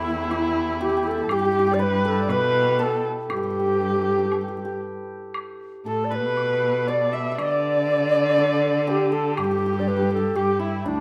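Pastoral and graceful, this short rubato passage of Chinese traditional chamber music at 60 BPM in 2/4 and D zhi mode sets a bright, reedy low xiao carrying the melody with vibrato and tongued notes, while a dark, woody erhu with portamento, a shimmering hammered dulcimer and a rich, up-front cello with a soft attack supply second lines, a woodblock tapping from 0.3 to 10.6 seconds, all captured by close, detailed microphones in a moderate recital hall.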